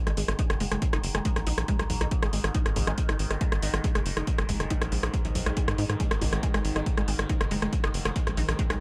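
A straight 4/4 pulse at 139 BPM drives this hypnotic peak-time techno excerpt on a G#5 chord, with a punchy electronic kick arriving at 0.4 s under up-front metallic hi-hats that pump with sidechain and crisp rim clicks, a tight sawtooth sequencer bass, a squelchy, detuned blip pluck in the background coloured by phaser, lush chorus, 12-bit sampler grit and tape echo, and a sustained, overtone-sweeping drone carrying its own chorus, reverb and phaser, set in a digital ambience.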